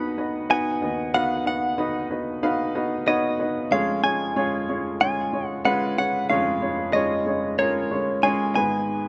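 A bright, compressed, direct-recorded clean electric guitar picks out a high melody over a woody upright piano that sits up front with long sustain and a slapback echo, in this driving, earnest pop excerpt at 93 BPM in 4/4, moving from B/D# to Db/F at 3.7 seconds and landing on Abm at 8.6 seconds, captured dry outdoors with little reverb.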